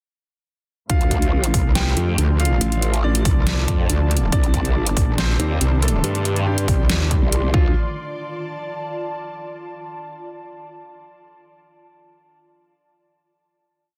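Opening at 0.9 s with a punchy, layered electronic kick, a half-time dubstep kit of deep snare and metallic hats, a growling, saturated growl bass, a warm baby grand piano repeating an octave riff through digital delay, and an earthy chamber string section pumping in the background, this aggressive, menacing heavy wobble dubstep drop soon adds an FM wobble bass answering the other bass, then an ethereal, airy pad that fades in slowly from 2.3 s and holds alone over the final note, within a dense, heavily limited modern master.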